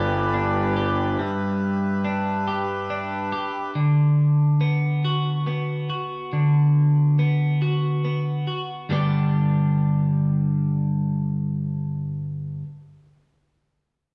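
A soaring, cinematic rock excerpt in 6/8 opens with a reedy, breathing pedal harmonium holding sustained chords until 3.7 seconds and a punchy fuzz bass note that stops at 1.2 seconds, while a bright, twangy twelve-string electric guitar carries its clean picked arpeggios through spring reverb from the start, over a G to D6 change and back to G, until 12.7 seconds, all set in the lush wash of a large studio room.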